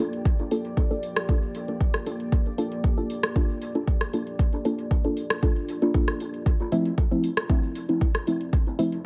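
A straight 4/4 pulse at 116 BPM drives this hazy, cavernous dub techno excerpt, with an overdriven, up-front electronic kick entering at 0.3 seconds beneath a soft vintage rhythm box of metallic hi-hats and rim clicks. Deep, full-bodied chord stabs with a nasal, plucked edge sit up front, colored by chorus, phaser, cassette tape grit, sidechain pumping and dub echo, moving from Gm7 to Dm7 at 6.5 seconds. Beneath them, a moody, detuned sawtooth pad with a sub octave and wave-folded, ring-modulated shading holds slow-blooming chords that carry a sidechain pump, all set in an echo-heavy mix with light reverb.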